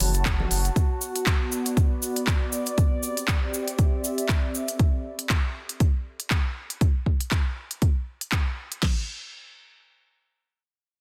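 A dense, heavily limited mix with light digital ambience carries this moody, late-night deep house excerpt at 119 BPM, where a deep kick, fat snare and crash cymbal from one up-front electronic kit, plus crisp hi-hats and handclaps from a second, drive a swung groove alongside grainy cabasa and faint vintage congas, while a round analog bass with tube saturation and sidechain pumping sounds only briefly at the start and a nostalgic, detuned tape-like pad warbles through chorus and phaser over F#m, Bm7, Cadd9 and A7 until 4.8 seconds.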